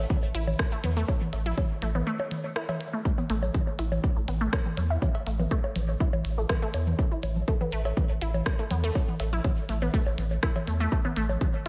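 Minimal techno with a clinical, quirky mood, cut from a longer piece, where a deep, thick sub bass with sidechain pumping sits up front beside a punchy, tape-warm layered kick, while clicky hats and rim clicks, analog electronic toms, bongos, congas and cowbell in diffuse ambient delay, a squelchy, detuned blip pluck riff through phaser, and a grainy, close tube shaker entering at 3.1 seconds fill out the light digital ambience over a single A5 chord.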